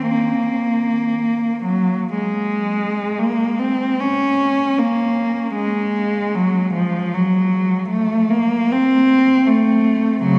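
Flexible, freely breathing rubato in 3/4 shapes this brief, meditative classical passage for unaccompanied solo cello, taken from a longer work. A single bowed cello sits up front, its rich tone colored by vibrato and sliding portamento as it moves expressively within its middle register for the full 10.4 seconds. A wet cathedral reverb with a long 5.5-second tail surrounds the cello with a distant sense of space, deepening the lonely atmosphere.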